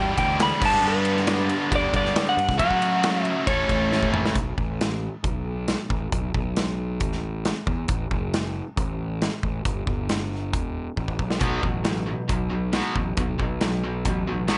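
Classic rock with a gritty, swaggering mood, taken from a longer piece and driven by a straight 4/4 groove. A warm, slightly broken-up slide guitar played with fingerpicks carries the melody in the opening seconds, alongside a bright, double-tracked overdriven guitar riff, before both drop out around 4 seconds. A dark, round fuzz bass with a punchy, overdriven edge holds the low end up front throughout, while a big acoustic rock kit with a punchy kick and medium-tuned snare enters at 0.2 seconds, working across crash, ride, hi-hat and toms. Drum fills lead into the new passage at 4.3 seconds and into the riff's return at 11.4 seconds. The stretch from 4.3 seconds leans on bass and drums alone until the riff guitar returns on a B5 power chord. The sound is close and studio-bound, with light reverb and a slightly dulled top end.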